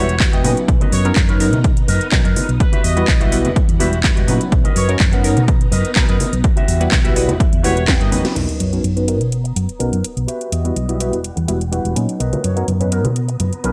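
A joyful, feel-good filtered disco house groove at 125 BPM in B major opens on a round, dark hollow-body fingered bass, a funky sawtooth polysynth comp with chorus and phaser, a swirling phased string machine, a twangy envelope-filtered guitar riff and a brilliant trumpet section melody, all pumping under a low-pass filter save the strings, as an up-front overdriven electronic kick, a cracking house kit with metallic hats and handclaps, and ringing tambourine and congas join, before a drum fill and band accent hand over at 8.4 seconds to a background sub drop while the kick falls away, in a dry, gritty recording.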